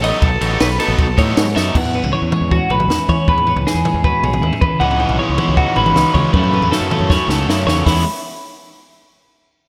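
Straight 4/4 at 157 BPM drives this intricate, bright math rock and midwest emo excerpt in E major, where a twangy, compressed twelve-string electric guitar plays up-front clean arpeggios with slapback echo, a second picked twelve-string joins with accompaniment at 1.8 s, and a double-tracked, overdriven cranked stack guitar riff drops out and returns at 4.8 s, all over a growling fingered bass with amped grit and a dry, up-front compact cocktail kit with dark cymbals, a high-tuned snare and a tight kick that fills from 7.1 s, the harmony moving from B9 through E69, C#m11 and F#m7 to E in a lush hall reverb with a big arena sound.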